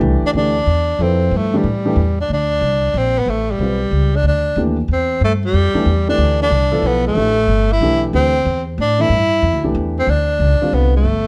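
A breathy, whispered tenor saxophone carries the melody up front from 0.3 seconds in this searching, cool modal jazz fragment in swung 3/4, over a woody, thumpy pizzicato upright bass and a mellow baby grand piano with audible action noise accompanying on a D9sus4 chord, in light reverb with a dark production.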